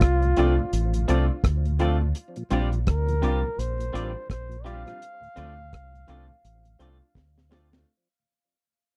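A dry, close 1970s-style studio sound frames this romantic, sweet lovers rock reggae excerpt, which fades out throughout as a mellow flugelhorn with vibrato, scooped notes and tape echo carries the melody over a round, punchy dub bass and an up-front reggae kit with a high-tuned snare and tight kick, while a clear, boxy grand piano, twangy guitar stabs with subtle chorus and a background tonewheel organ with key click and slow rotary speaker fill out the Dm7 and Bb69 chords before a drum fill at 7.2 seconds.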